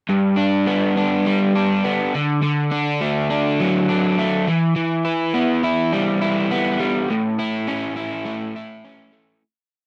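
A crunchy, double-tracked electric guitar plays alone from 0.1 seconds, sitting up front as it picks overdriven arpeggios through G, D, E minor and A in a driving, swaggering rock verse. Light reverb gives a touch of space to a dry, close, 1970s-style studio sound, and the piece fades out from 7.1 seconds to its end at 9.4 seconds.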